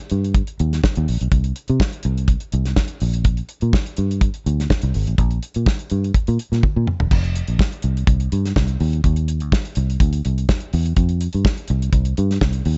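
A dark, round, foam-muted fingered electric bass sits up front in this sultry, glamorous disco excerpt, joined throughout by a damped 70s acoustic drum kit with a tight kick, medium-tuned snare, hi-hat, crash and toms, whose fill at 6.6 s leads into a new section at 7.1 s, all in a close, nearly reverb-free mix with a dulled top end.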